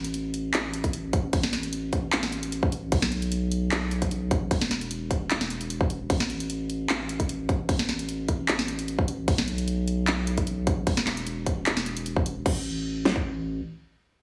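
Emotional, bittersweet future bass in a half-time feel, cut from a longer piece, where a deep, thick saturated sub bass pumps under the sidechain while a bright-hatted, overdriven trap kit with sharp snare, claps and crash runs alongside a layered big-room kit whose punchy kick and huge snare enter at 0.8 seconds, all pressed into a heavily compressed, radio-like sound with a small room ambience and light digital reverb through a drop that gives way to a brief new section at 12.5 seconds.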